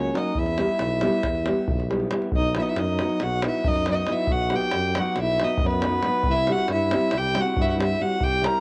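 An up-front, earthy bowed violin with light vibrato and a cassette-tape tint carries a restless, virtuosic Balkan wedding-band melody in 9/8 over a distant, dark clarinet second line, thumb-plucked nylon-string guitar, a close-miked mellow tuba bass and a tight, saturated davul entering at 0.2 seconds, all set in a moderate spring reverb on a home cassette recording cut from a longer piece.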